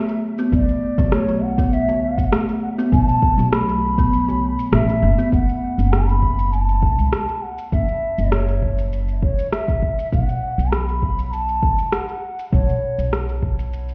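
A pure, soft-attacked bamboo bansuri carries the melody with vibrato and delay over a mystical, meditative organic downtempo groove, where a hollow, thumbnail-plucked kalimba spins digitally delayed arpeggios until 5.3 seconds, a dark, woody pizzicato upright bass pumps beneath a deep, tape-warm electronic kick that briefly drops out at 4.7 seconds, and a layered electronic shaker and rim click keep time, the excerpt sounding muffled as if heard through a wall in a stone room.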